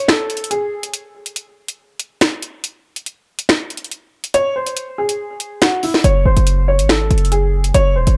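Ominous, tense drill hip hop at 141 BPM in a half-time feel, where a woody upright piano with short sustain plays a low-passed melody through tape echo, dropping out before returning at 4.3 s, over an up-front electronic drum kit of finger snaps, metallic hi-hats and a sharp snare, until a punchy, heavy 808-style bass with a fast attack and a noise layer hits at 6.0 s, all in a light reverb.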